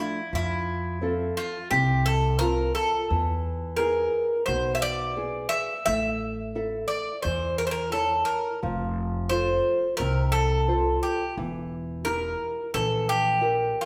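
The bouzouki and nylon-string guitar start together, the bouzouki's bright, metallic double strings sitting up front with a melody ranging from E4 to E5. This is a moody, brooding Greek folk excerpt for a bouzouki band, moving at 87 BPM in a straight 4/4 and cut from a longer piece. Its picked tone carries some octave-doubled strings, while the small, thumb-plucked guitar supplies a warm accompaniment beneath. The upright bass enters at 0.3 seconds, its pizzicato gut strings giving a woody, dark, thumpy foundation. The harmony moves through F, E, A, F and an E diminished chord, all within one continuous section. The band plays live in a single room, bathed in a wet, large studio reverb that lends the performance a spacious, shadowy air.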